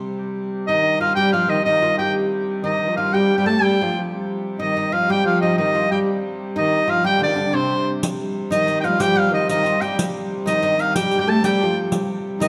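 A medieval dance in a straight 6/8, this excerpt from a longer piece feels mysterious and driving. A nasal, even, wheel-bowed hurdy-gurdy opens alone at 0.0 s with a low drone, and at 0.7 s the shawm, oud and viola da gamba enter. A bright shawm carries the folk-style melody up front with vibrato. Beneath it, a woody, plectrum-plucked oud with double strings and a rich, ringing viola da gamba with a gut-string tone play second lines in the middle and low registers. At 8.0 s, as the opening section repeats, a riq joins with dark jingles played by soft hands, sounding close and dry. The ensemble sits in a moderate concert hall reverb that gives the dance a spacious ring.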